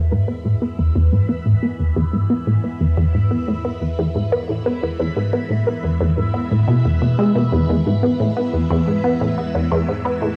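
Ambient piece in E major at 89 BPM, cut from a longer work, with an expansive, cosmic mood that rests on a single E chord. A squelchy, resonant blip pluck sits up front playing a low riff through phaser, delay and cassette tape, while a phased string machine holds swirling, warbling sustained chords behind it and a very quiet, nasal analog drone on E2 enters at 0.3 s to anchor the bass. The whole home-recorded cassette sound is bathed in a moderate spring reverb.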